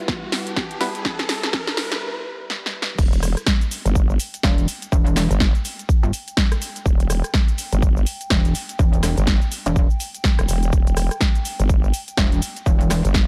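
This bass house excerpt opens on a build-up in E minor at 124 BPM, where a bright, evolving sawtooth pad holds sustained chords under a filter sweep while a riser climbs and a drum fill rolls through the first 2.0 seconds. Alongside it sits a warbling, lo-fi pad of square and triangle tones, nostalgic and dark with its own built-in reverb, and it carries on in the background to the end, while a hollow, organ-like stab with phaser and delay flickers briefly near the start. After a short break, the drop lands at 3.0 seconds, where a nasal, vowel-sweeping wobble bass with overdrive takes the low end, joined at 4.4 seconds by a heavy, pulsing pluck bass thickened by tube saturation. A punchy, layered electronic kick and a big-room kit of punchy snare, metallic hi-hats, rim clicks, shaker and crash cymbal sit up front, driving a swung 16th-note groove that feels gritty and bouncy. The synth parts pump through sidechain compression, and the mix has a dark, high-passed digital ambience.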